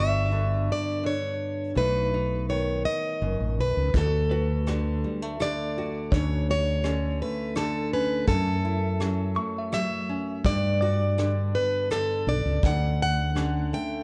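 A boxy, picked steel-string acoustic guitar carries the tender melody through a tape echo in this heartfelt folk-pop ballad in 3/4, over a full-bodied fingerpicked nylon-string guitar, a round, dark fretless bass, twangy compressed clean electric guitar arpeggios with harmonic tremolo in the background, and a distant, roomy brush kit with tight kick and rim clicks that enters at 3.9 s, all in a dark, warm production with light reverb.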